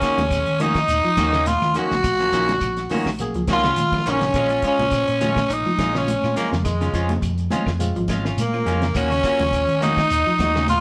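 Afrobeat at 104 BPM with a funky, defiant mood, this short excerpt puts a raspy, growling tenor saxophone up front with slapback echo, joined by a smooth trumpet second line in the background, over a barky, lightly overdriven reed electric piano, two clean electric guitars on quiet arpeggios and bright picked stabs, a cloth-damped drum kit with a fat snare and tight kick, a round, punchy fingered bass, distant high-tuned congas, grainy shekere and faint woody claves, all moving from Ebm7 to Bbm7 and back in a live room sound with a drum fill at 3.6 seconds.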